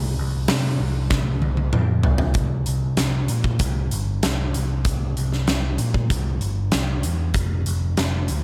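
A straight 4/4 hard rock groove drives this short, energetic and anthemic cut from a longer piece. An overdriven, picked electric bass opens alone at 0.0 seconds, its growly, amped tone bright and punchy as it moves between F1 and C3. A huge arena drum kit joins at 0.5 seconds, with a fat snare, a punchy kick, hi-hat and toms sounding acoustic and roomy, placed up front beside the bass. A drum fill runs from 1.1 to 2.4 seconds, carrying the music from its opening passage into a new section that lasts until the end. The mix is dry, with little reverb, and both parts carry equal weight.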